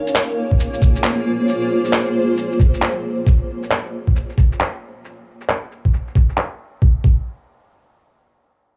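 A dry, gritty recording with transformer saturation carries this nocturnal, rainy future garage excerpt at 135 BPM with swung 16ths, where a blurred, detuned granular cloud pad with built-in reverb and sidechain pumping holds a Bbm7 chord until 3.3 seconds, muffled, pitched-down electronic shaker and handclaps sit up front as a filter sweep moves across the drums, and a thumpy, tape-warm electronic kick drum enters at 0.5 seconds and carries on to 7.2 seconds.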